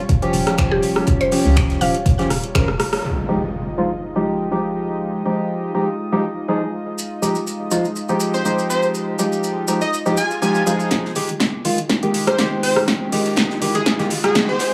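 Heard in a light digital room ambience, this deep, late-night deep house excerpt in F minor at 122 BPM opens with a smooth, detuned pad pumping in the background beneath a hollow, knocking FM bass, a woody mallet-like pluck, a punchy electronic kick and an overdriven, up-front deep house kit with metallic hats and finger snaps layered over a very quiet, dry 70s kit, while a mellow, organ-like stab plays on through a filter sweep after the beat falls away at 3.0 s for an impact, grainy maracas and a bright, catchy unison lead, before the drums return at 10.9 s for a riser-driven build-up.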